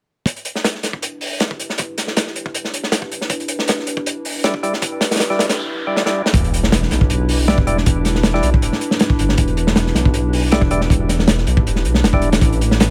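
A crunchy, saturated breakbeat kit sits up front in this frenetic, raw drum and bass excerpt at 158 BPM in E minor, its tight kick and medium-tuned snare rolled off on top within a small room, while a warbly, nostalgic tape-like pad holds sustained chords under a filter sweep. Percussive tonewheel organ stabs with overdrive, 12-bit sampler grit and dub echo arrive at 4.4 seconds, and a background noise sweep and a drum fill build toward the drop. At 6.3 seconds an impact lands and a deep, rumbling detuned saw bass enters, dark and beating.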